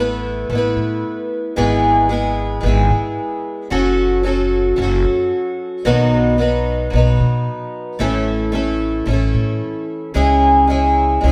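Hopeful and gentle, this short acoustic folk passage moves at a steady 112 BPM in a straight 4/4, cut from a longer piece and tuned slightly low to A4 = 435 Hz. A fingerpicked twelve-string parlour guitar sits up front, its fresh strings giving a bright, shimmering, octave-doubled sound with a boxy body. Beneath it, a pizzicato upright bass strung with gut adds a dark, woody, thumpy foundation, both parts playing together for the full 11.3 seconds. The harmony opens on Asus2, then moves through E/G#, F#m and B before returning to A at 8.0 seconds and landing on C#m. The pair sounds like a small band playing live in one room, wrapped in a short, wet small-room reverb that keeps the sound intimate.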